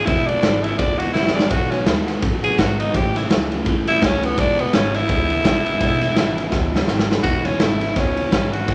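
A growling, raspy tenor saxophone leads this upbeat, retro swung rockabilly excerpt over a very quiet bright picked acoustic guitar and a twangy, slightly broken-up electric guitar riff, joined at 0.1 seconds by a woody pizzicato upright bass in the background and an up-front, saturated garage drum kit with a punchy kick and fills before the saxophone takes a solo at 7.2 seconds, all set in a moderate large studio reverb.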